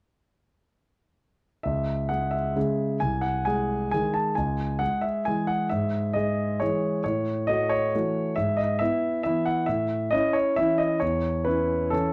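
A concert grand piano plays alone from 1.6 to 12.1 seconds in this nostalgic, bittersweet classical waltz in C# minor, moving at 135 BPM in 3/4 with uneven beats and rubato. The intimate, up-front tone has deep bass, long sustain and audible action noise, and the chords move from C#m through G#/B# and A6 to E/G# and A. The polished, dark-toned production adds light reverb to this short fragment of a longer piece.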